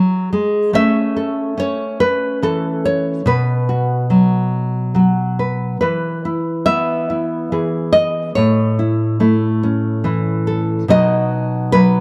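A full-bodied, fingerpicked nylon-string guitar plays alone, up front and deep in classical tone, through this gentle, warm folk passage in E major, a 12-second cut from a longer piece that moves in an unhurried 6/8 at 47 dotted-quarter beats per minute, drifting from a rootless Eadd9 through A, B5 and E to a closing B, all wrapped in moderate spring reverb and a dark production.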